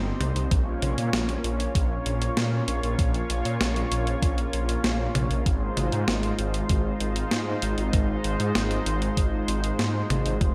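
Synthwave at 97 BPM in a straight 4/4, this nostalgic, moody passage from a longer piece moves through Cm, Bbm and Ab6 in a light digital ambience. A bright, full-bodied unison pad with a slow attack and long release holds sustained chords under chorus and sidechain pumping, while a thick detuned saw bass with a fast attack sits up front beneath it. A clean 12-bit drum machine, with hi-hat, a medium-tuned snare and toms bathed in gated reverb, enters at 0.2 seconds, and a thumpy, tape-warm electronic kick joins at 0.5 seconds.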